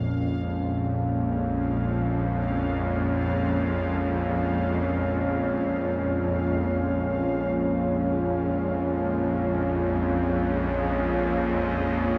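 This dark, cavernous ambient drone opens with all three parts together, cut from a longer piece. A low, bowed-like drone sits up front with a tense, string-like sawtooth tone, thickened by a unison and a noise layer, and carries vibrato and its own reverb. Above it, a sweeping resonant pad holds sustained chords on a single minor seventh harmony, its detuned, vintage character warbling through a filter swell and a subtle chorus. High over both, a quieter bubbling texture moves in random filter steps, resonant and detuned, with chorus and reverb of its own. Slow attacks and long releases blur the parts together, and a cathedral-like reverb with a 5.9-second decay surrounds the whole 12.2-second passage.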